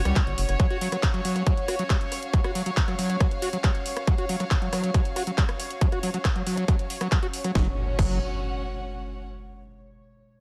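A screaming, squelchy acid line with resonant sawtooth bite, distortion, chorus and digital delay drives this hypnotic psychedelic trance excerpt, riding over a distorted, overdriven electronic kick placed up front and a techno kit of cracking snare, handclaps, hi-hat, rim click and crash cymbal, both set in small room ambience. A bubbling stepped-filter texture holds sustained chords in the background while a dark, intimate chamber string section bows softly with light vibrato. A round, mellow analog bass with tube saturation appears briefly at the start and returns at 7.6 s, where an electronic impact lands and the strings carry on until 9.3 s.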